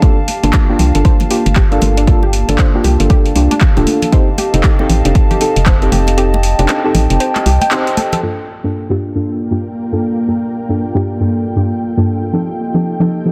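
Deep house with a hypnotic, warm mood, built on a swung groove where an overdriven, up-front kick with 12-bit grit, a drum kit with metallic hats and handclaps, and close, dry congas in the background drive things until the kick drops out at 6.2 seconds. A hollow, organ-like FM bass sits up front beneath soft, deep chord stabs treated with chorus, phaser and tape echo, while a warbly, dusty pluck plays lo-fi arpeggios and a moody, nasal analog pad sustains the chords, all pumping with sidechain compression. After a band accent at 7.7 seconds, the rhythm section falls away, a filter sweep moves across the stabs, and an ethereal, airy pad with ensemble chorus and built-in reverb enters over the Gm9 to F9 changes in this excerpt.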